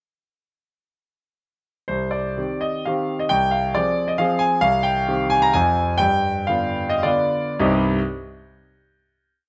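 Dotted rhythms drive this short romantic dance in triple time, with the bass and chords leaning on the second or third beat and the pulse pushed and pulled by rubato. It is a complete classical piece for solo concert grand piano, capricious in character yet tinged with nostalgia. The piano sings a single-line melody over those accented chords, its tone clear and open, with a deep bass and long sustain. Set up front in a light reverb, the instrument sounds close and present. Beginning at 1.9 seconds, the harmony moves between minor chords before a dominant seventh, and the music slows between 4.0 and 7.6 seconds. It settles on a final minor chord at 7.6 seconds, which rings on to the end.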